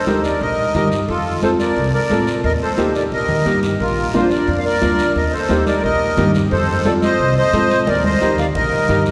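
Festive and sunny, this brisk cumbia excerpt at 177 BPM puts a reedy, sweet accordion up front with its light tremolo tuning carrying the melody, over a brilliant upright piano, a growly pizzicato upright bass, bright thin-skinned congas set in the background and a raspy guiro, all bathed in a wet church reverb as chords move through Eb, F, Bb and F7, with drum fills at 2.8 and 7.9 seconds.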